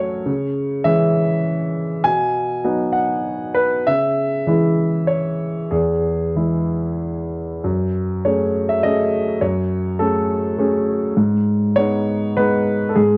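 A lone grand piano, warm, natural and close up front, opens this melancholic, wistful fragment of neoclassical minimalism, moving in a loose, rubato three-beat lilt through C#m, B and E. At 7.6 seconds the music turns to a second passage built on F#madd9 and then G#m, with the piano spanning deep bass to the upper register. A small room's moderate reverb surrounds the playing, and the recording carries the worn, warbling pitch drift of old cassette tape.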